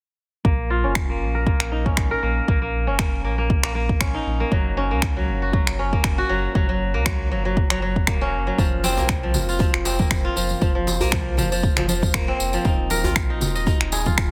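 Warm and driving, this afro house excerpt moves at 118 BPM in Bb minor with a light swing on the sixteenths. Up front, a bright, crisp acoustic kora plays ringing fingerpicked arpeggios through sidechain pumping, a low-pass filter and dub echo, while a round sine sub bass, also pumping, carries a filter sweep beneath it. A deep, tape-toned electronic kick anchors the groove from the start, and overdriven electronic finger snaps, re-recorded in a small room with soft clipping, join at 1.0 seconds. At 8.6 seconds the percussion fills out with low-tuned ringing congas in the background and a jingly tambourine, followed by a medium-tuned djembe with metal rattles and hard hands, also in the background. The chords move from Bbm through Gb6 and F5 to Eb5, set in light small-room reverb under a dense, heavily limited modern master.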